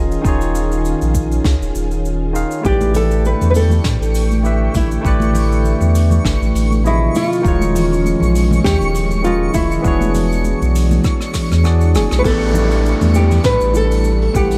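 A dark, warm production with light studio reverb carries this relaxed, smooth sunset chillout excerpt, where a barky tine electric piano with digital delay plays accompaniment and a silky string machine holds sustained chords over a round sub bass, an electronic kick and a brushed jazz kit with airy, dark cymbals. A full-bodied, fingerpicked nylon-string guitar enters on the melody at 2.7 seconds, joined by very quiet congas and, shortly after, a twinkling granular shimmer, before a woody kalimba and a downlifter arrive at 12.2 seconds following a drum fill.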